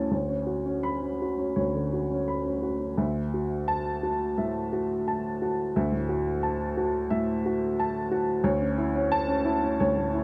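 A dark, woody upright piano opens alone and up front, playing a short neoclassical minimalist passage in D major with a tender, hopeful mood. The tempo is unhurried and rubato, moving at roughly 82-91 BPM in 4/4, as the harmony passes from Bmadd9/D to Dadd9 at 3.0 seconds and settles on A/D at 8.5 seconds. The mellow, naturally sustained tone spans a range from deep bass to the upper register, framed by light reverb and a warm, dark production across this brief fragment cut from a longer piece.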